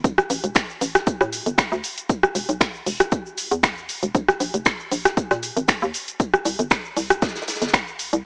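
A lightly swung 4/4 groove at 117 BPM drives this smooth, warm deep house fragment, where a punchy, overdriven electronic kick and a house kit of sparkling hats, finger snaps, rim clicks and shaker sit up front beside a hollow, bouncy FM bass pumping under sidechain, while a very quiet, airy acoustic kit adds hi-hat, shaker and snare played with bundle sticks, all wrapped in light small-room reverb, vinyl crackle and a small-speaker tone.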